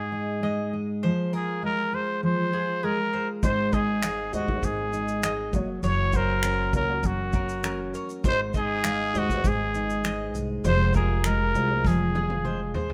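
A growling, raspy trumpet carries the sunny, heartfelt melody up front from the start, over a full-bodied, fingerpicked steel-string acoustic guitar, with a round mandolin picking arpeggios in the background from 0.4 seconds. At 3.4 seconds a woody, pizzicato upright bass joins, along with a natural, small-room country drum kit with a punchy kick, snare, toms, shaker and finger snaps, and a very quiet, dark, slightly detuned vintage upright piano with audible action noise. Light reverb surrounds this straight-feel acoustic pop passage, and a drum fill arrives at 11.8 seconds.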